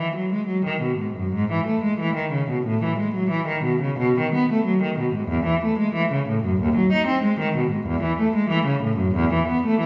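A single cello with a rich, reedy gut-string tone plays alone and up front in period style, its bowed line unfolding with serene, radiant rubato across this baroque-style suite movement fragment, set in a wet recital hall reverb and heard from further back in the room.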